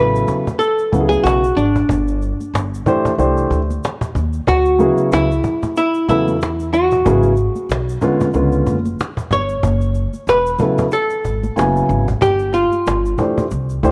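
A clean, picked archtop guitar with a hollow-body tone and slapback echo carries the melody up front in this smooth, cool jazz-hop excerpt at 93 BPM with swung sixteenths, over a dark upright piano whose mellow chords come with audible action noise and long sustain. A pizzicato upright bass with a woody, steel-string tone anchors the low end, while a cajon with faint snares and soft hands enters at 0.2 seconds alongside tube shaker and congas sitting close and dry in the background. The whole piece sits in a moderate plate reverb and carries the worn, warbling pitch drift of old cassette tape, moving through chords from Bsus2 and Dmaj13 to C#7b9 and F#m7.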